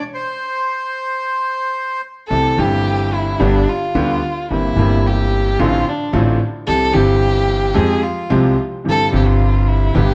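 Tango at 110 BPM in C major with a rubato, tense and dramatic feel, this cut from a longer piece opens with a reedy, airy bandoneon carrying the melody up front alongside a dark, expressive bowed violin full of vibrato and portamento, then at 2.3 seconds the bandoneon has dropped away and the violin takes a solo over a clear, boxy grand piano with short sustain and a woody, thumpy pizzicato upright bass, all set in a moderate large studio reverb.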